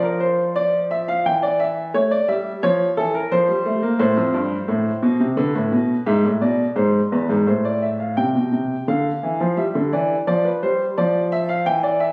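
A baby grand piano, open and up front with a long sustain, carries this stately, elegant passage cut from a longer piece. It is a baroque-style two-part invention in 3/4 with a straight feel, ranging from E2 to G5 and tuned slightly low at A4 = 439 Hz. The harmony moves from Dm/F through Em7, A7 and Fadd9 before settling on Am, then passes through Asus24 and E7/G# back to Am. At 8.2 seconds a second section begins on F5 and travels through Em to return to Dm/F, ending at 12.1 seconds. A recital hall reverb with a 1.5-second decay surrounds the instrument, while the phone capture, studio ambience and compression give the sound a slightly squeezed character.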